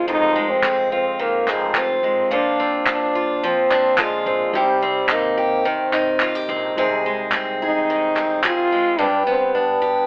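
Heard through a narrow, telephone-like filter with a moderate room reverb, this tender, reflective acoustic pop fragment features a clear French horn singing the melody with vibrato and a soft attack, up front beside a full-bodied picked steel-string acoustic guitar and crisp group handclaps from 0.6 to 8.6 seconds, while a very quiet dark, mellow upright piano plays along and a thumpy pizzicato upright bass sits in the background until it drops out at 9.0 seconds.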